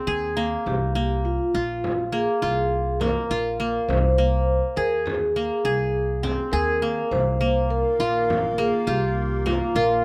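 Restless and urgent, this contemporary chamber piece drives along in 11/8 at 205 BPM in eighths, cut from a longer work, with a close, detailed sound and little reverb. A bright-edged qanun played with fingerpicks spins arpeggios up front beside a woody pizzicato upright bass, while a mellow vibraphone with soft mallets and slow motor vibrato carries a ringing second line and a small frame drum taps from a distant large room under soft hands. Chords move from Abadd9 through Ab69/Bb and Abadd9/C to Ebsus2, where a detuned, morphing wavetable pad with chorus and built-in reverb enters at 7.6 seconds with slow-attack sustained chords.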